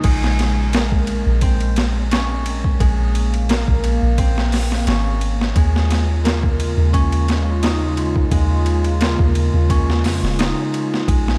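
Trip hop at 87 BPM in Bb minor with a light 16th-note swing, this melancholic, cinematic excerpt moves from Bbm9 to Eb9sus4 at 5.6 seconds over its 11.4 seconds. A gritty, overdriven sampler-style drum kit with a thumpy kick, high-tuned snare, hi-hat, ride and crash sits up front beside a deep, round, soft 808-style bass, while a warbling, nostalgic tape-like pad holds sustained, detuned chords bathed in chorus and its own reverb. A ringing, fingerpicked concert harp plays arpeggios through delay, all within a dark, dry production dusted with vinyl crackle.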